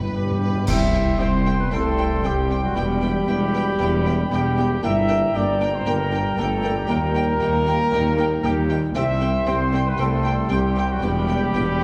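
A hard-mallet timpani fill opens this heroic, triumphant film-score excerpt at 116 BPM in straight 4/4, as distant violins carry the melody over a very quiet second violin line, woody violas and lush cellos and double basses, with dark, up-front trumpet stabs and mellow French horn chords entering together; then at 0.7 s a burst of bright clash cymbals and concert bass drum brings in an airy flute, a background cor anglais, a close-miked clarinet, clear trombones and a mellow tuba, set in a wet scoring-stage reverb as the harmony moves from C through Em, Gm and Eb.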